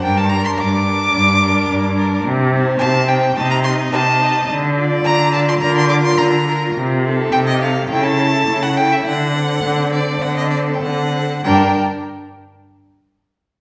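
Restless and stormy, this quick classical-period movement for string quartet in G minor moves at 95-110 BPM in 4/4 with a rubato feel, and it is cut from a longer piece. A rich, smooth first violin carries the melody while a clear, focused second violin sits up front on a higher line. Below them a warm viola adds expressive portamento to the accompaniment and a clear cello anchors the bass, all four bowed with vibrato and heard from further back in a wet recital hall, with the harmony pressing through Cm, Dm and D7 before settling on G5 at 11.4 seconds.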